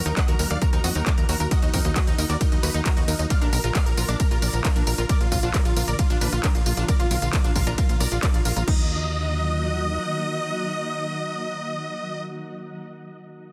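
A shimmering, ethereal pad with built-in reverb and chorus opens this driving, emotional stretch of uplifting trance at 134 BPM in Eb harmonic minor, joined at once by a round analog pluck spinning arpeggios in the background. Within moments a huge, euphoric supersaw lead carries the melody, while a catchy, punchy unison lead with vibrato traces a second line higher up, both thrown into dub echo. Underneath, a tight, punchy sequencer bass and an overdriven, heavy electronic kick sit up front, with a techno kit of smooth hats, handclaps, tambourine, ride and crash adding drive. The drop rides Ebm and Bb chords, and sidechain pumping makes the pad, pluck, leads and bass breathe with the kick. Around 8.8 seconds the drums fall away and the pluck stops, leaving the bass until 10.0 seconds and the leads and pad sustaining over Ebm in a dense, heavily limited, dry mix.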